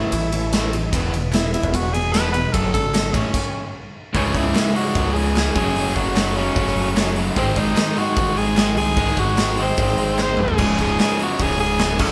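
The beat is a straight 4/4 at 149 BPM, driven by a big acoustic rock kit placed up front, with a punchy kick, a medium-tuned snare, bright cymbals, hi-hat, ride and toms, and a drum fill from 10.2 to 10.6 seconds. This gritty, swaggering classic rock passage is cut from a longer piece. A raspy, growling tenor saxophone carries the solo melody with vibrato and a smooth top, over a cranked stack guitar riff that sits in the background with a double-tracked overdrive and a punchy, direct electric bass. Beneath them, a very quiet tonewheel organ holds shouting chords through a slow rotary speaker with key click, and crisp group handclaps enter at 1.3 seconds. After a stop from 3.3 to 4.1 seconds, the music turns to C# harmonic minor and moves through C#m, F#m and G#, and a second crunchy, double-tracked guitar riff joins. The band sounds as if it is playing live in one stone room with moderate reverb.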